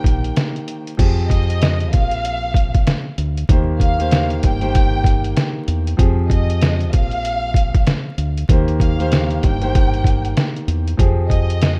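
A gritty, dark boom-bap hip-hop cut in F minor opens at once with a compressed, pitched-down sampler-style drum kit, its thumpy kick and medium-tuned snare up front, alongside a round, deep fingered electric bass and a mellow baby grand piano whose long-sustained accompaniment moves between Eb6 and Fmadd9 chords. A lush bowed violin section carries the melody with expressive vibrato and portamento, touched by digital delay, while the swung 96 BPM groove rolls on through the 11.8 seconds. The rough home-demo mix is dry and close, dusted with vinyl crackle.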